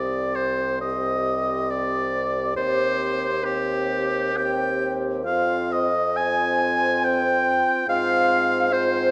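From the first moment, a wind quintet opens this slow, elegiac movement in C minor, moving in a rubato 3/4 at roughly 63-72 BPM. The clear oboe sits up front and carries the most presence, its light vibrato shaping a second line that shares the G4 to Ab5 range with the melody. That melody belongs to the concert flute, hollow and pure in tone with tongued notes and vibrato, close-miked yet very quiet beneath the oboe. The French horn holds C4 with a clear, lightly vibrating sound, while the mellow clarinet fills in between F4 and G4 from a distant, roomy place in the background. The bassoon anchors the bass from C2 to Ab2 with a warm, classical tone. The harmony moves from Cm to Cm/Eb at 2.6 seconds and on to Fm and Fm/Ab, all inside a moderate scoring-stage reverb and a dark, warm production, in a passage cut from a longer piece.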